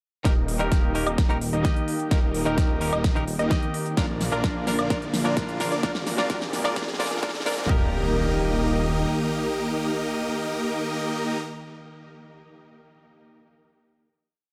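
An uplifting, anthemic festival progressive house piece in Eb major at 129 BPM opens with a bright, twangy clean electric guitar playing dotted-rhythm chords through tape echo. Almost at once the full arrangement arrives for a build-up: a punchy four-on-the-floor electronic kick sits up front, a big-room kit adds crisp programmed hats, a huge snare backbeat, woodblock and a drum fill, and a thick, menacing detuned saw bass follows the chord rhythm. Huge, full-bodied supersaw chords drive a close-voiced riff with tape echo under a filter sweep, while a detuned unison pluck doubles them in the background with its own filter sweep. A warbling, vintage pad with chorus holds sustained chords beneath, and the melodic parts all pump with sidechain compression as the harmony moves from Eb to Bb and Abadd9, with a very quiet riser and impact entering at 3.7 seconds. The drums drop out near 7.7 seconds and the bass stops at 9.0 seconds, leaving guitar, pad, pluck and supersaws to hold a final Eb chord in light reverb until 11.4 seconds.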